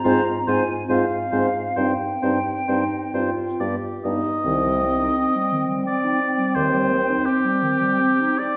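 A hollow, vibrato-tinged concert flute sings the melody over a clear, smooth-topped clarinet and a warm French horn from the first moment, joined almost at once by a lightly vibrato oboe on a second line and a mellow bassoon bass that stops at 7.1 seconds, forming a melancholic, elegiac slow romantic movement for wind quintet in C minor and 3/4 with rubato between 65 and 88 BPM, heard from further back in a reverberant recital hall in a short cut from a longer piece.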